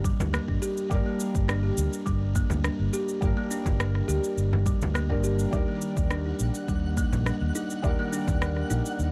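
Meditative and hypnotic organic downtempo in a dark, warm production, where a buzzing, woody kalimba with vintage sampler grit and delay plays arpeggios up front beside a round, amped fretless bass with ensemble chorus, while a felt-muted upright piano with audible action noise pumps softly through its delay, a deep tape-toned electronic kick, cabasa and rim click sit in a small room, a small bright frame drum ticks dryly in the background, and a sparkling granular shimmer fades in at 5.9 s as the chords move from Gm to Ebmaj7.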